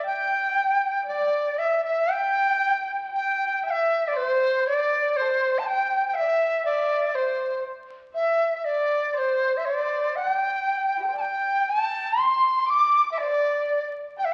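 Heard through the crackle of a very old 78 rpm record, this excerpt of Chinese traditional chamber music carries a moderate recital-hall reverb and a festive, pastoral mood in a straight duple metre. Up front, a bamboo dizi carries the melody with an airy, buzzing-membrane tone, soft attacks and vibrato. A single bowed erhu sits well behind it as a second line, warm and expressive with vibrato and portamento, and both play throughout as the music moves into a new section at 2.1 seconds.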